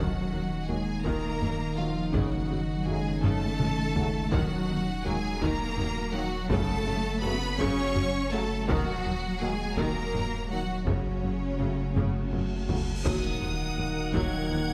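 A slow 6/8 pulse at 55 BPM drives this vast, tense cinematic cue in Eb minor, a hybrid orchestral and electronic score cut from a longer piece, where lush bowed violins carry a vibrato-rich melody over a second violin line and focused violas while the chords shift between Ebm and Gbm. Expressive cellos, woody double basses and a deep, saturated sine sub bass anchor the low end, a warbling, lo-fi tape-like pad with chorus hums darkly behind, and from 0.7 seconds a bright, close-miked trombone section and very quiet, mellow French horns sustain chords. Hard-stick taiko enter at 1.0 seconds with fills, and a huge, bright cymbal swell from 12.4 seconds breaks into an impact at 13.0 seconds, all set in a wet scoring-stage reverb.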